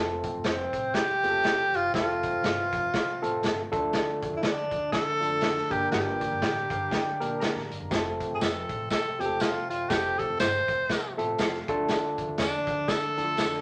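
A clear tenor saxophone with light vibrato carries the jazz-inflected melody up front in this uplifting 1960s-style soul piece in F major, swinging at 120 BPM. Beneath it, a bright, barky tine electric piano, lightly overdriven through a combo amp, supplies accompaniment and adds fills around 6.4 and 10.9 seconds, while a mellow, distant brass section holds sustained chords and a woody pizzicato upright bass sits in the background. A gritty, saturated garage drum kit with a punchy kick and pumping room sound drives things up front, a jingly tambourine joins at 7.9 seconds, and a wet club reverb gives the whole track a warm, lively glow.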